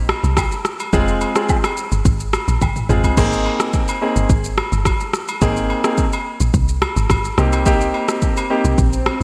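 A bright 1980s-style digital sheen and a lush hall reverb frame this sultry, hypnotic afrobeats excerpt at 107 BPM, built on a deep, round log drum bass with an FM tone and a dark, decaying tail. An up-front, layered electronic drum kit with a deep kick, rim click, shaker, toms and crash carries gated reverb and tape-like warmth, while agogo bells and woodblock, joined by tube shaker and group handclaps, sit in a small acoustic room. A clear grand piano enters at 0.9 seconds on chords moving from Fm to Abadd9 and Cm7, a drum fill arrives at 2.6 seconds, and an electronic swell rises in the background from 8.3 seconds.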